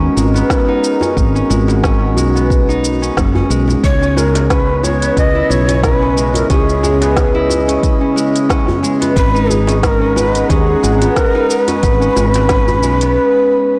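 Blown-out and overdriven, with a lush hall reverb, this meditative, warm organic downtempo excerpt opens on up-front, ringing concert harp arpeggios, a growly, round fretless electric bass and a detuned, warbling analog pad holding sustained chords, both bass and pad pumping under sidechain compression above a deep electronic kick. An organic electronic drum kit adds a woody snare, smooth hats and shaker, while a vintage djembe with metal rattles sits in the background. At 3.8 s a breathy, mellow cedar flute enters with the melody, its tongued chiff and unsteady vibrato trailing delay and shimmer reverb.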